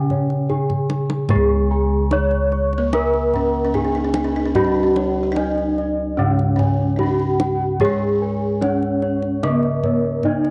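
This serene, shimmering gamelan passage opens with bronze metallophones and bossed gongs sounding together, cut from a longer piece. One metallophone carries the melody with a ringing, mid-forward tone, while a darker, smoother metallophone plays the accompaniment beneath it, both struck with wooden mallets in paired tuning that gives a shimmering beat. Round, beating bossed gongs spin arpeggios up front, and lower gongs in a boxy small room anchor the bass. A deep, close and dry kendang played with hard hands joins almost at once and plays an early fill. At 1.3 seconds a bright, horn-mallet metallophone adds its own arpeggios. From 2.8 to 9.5 seconds a buzzing kalimba, plucked with the thumbnail and sounding woody and hollow, weaves a vintage second line. Moderate spring reverb and studio ambience surround the ensemble, and the home cassette recording cuts off everything above 10.4 kHz.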